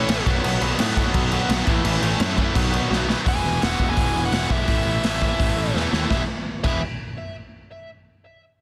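Stacked, bright overdriven guitar riffs open this energetic, rowdy punk rock excerpt in E major at 169 BPM. A growly fuzz bass and an up-front, gritty garage drum kit with a punchy kick and a saturated, rolled-off top follow almost at once in a bright stone room, and the chords move between B, A and E. After a drum fill at 2.9 seconds, a very quiet double-tracked guitar drops out at 3.3 seconds as a dark, smooth lead guitar with tape echo takes up the melody over a dense, heavily limited master.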